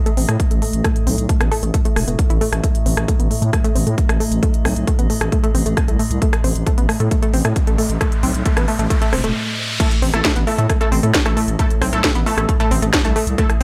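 Driving peak-time techno at 134 BPM in A minor, dark and relentless, this excerpt opens with a round analog pluck riff and an eerie metallic drone sitting in the background. They are soon joined by a cracking snare, smooth hats, rim clicks and crashes from the techno kit, then a growling FM bass and a heavy, up-front kick, with sidechain pumping on the pluck, drone and bass. A riser enters at 7.6 seconds and a brief stop follows, then the drop lands at 9.8 seconds with an aggressive, detuned rave stab carrying chorus, phaser and tape echo.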